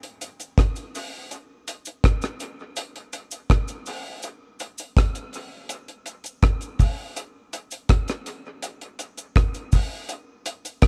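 A deep reggae drum kit opens the excerpt at 82 BPM in a straight 4/4, with hi-hat, a tight kick and rim clicks that sound dark, dry and up front. From 0.2 seconds a quiet cabasa adds a close, shaker-like rattle with a handclap quality beneath the kit. The short cut has a smooth, bittersweet mood and a warm production with little reverb.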